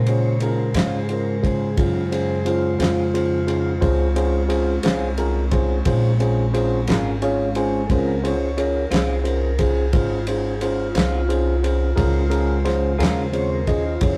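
A mellow tonewheel organ leads this mournful, smoky slow blues, its soft, flute-like voice carrying a solo from 0.0 to 14.2 s through a slow rotary speaker, with a touch of key click in the sustained chords. Set in 12/8 at 59 BPM in Bb minor, the short excerpt, cut from a longer piece, rests on a Bbm7 chord from the start. A woody pizzicato upright bass sits up front beneath it, while a bright tine electric piano adds clean, direct accompaniment and a brief fill at 6.9 s. A soul drum kit with a fat snare, tight kick and ride cymbal keeps a dry, dark, rolled-off sound. Further back, a clean picked electric guitar with harmonic tremolo joins at 0.8 s, and the whole take has the rough feel of a rehearsal room with moderate studio reverb.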